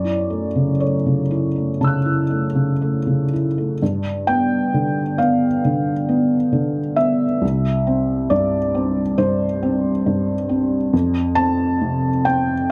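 Intimate and melancholic, this short neoclassical minimalist passage, cut from a longer piece, features a felt-muted upright piano playing alone with a free, rubato feel, its soft, mellow tone sitting up front with the mechanical action noise clearly audible. The harmony opens on F#m7 and then shifts at 3.8 seconds into a new section that moves through G, C and F, with the piano spanning from deep bass notes to bright upper registers. A moderate small-room reverb and a dark production give the recording a close, private atmosphere.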